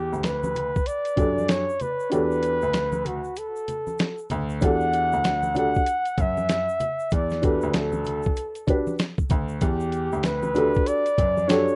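Smoky and mellow, this jazz-hop fragment sets a breathy flugelhorn solo up front, its soft-attack, scooped notes carrying vibrato and a tape echo over an Em11 chord. A muffled, pitched-down sampler drum kit with a thumpy kick and 12-bit grit sits forward in the mix, its kick dropping out from 2.1 to 4.6 seconds, while a smooth, vintage grand piano holds the low bass line and a dark, woody, slightly detuned upright piano with audible action noise enters at 1.2 seconds to comp. A close, dry egg shaker and ringing congas add light percussion, and the whole rough home-demo mix sounds dull and intimate, with little reverb.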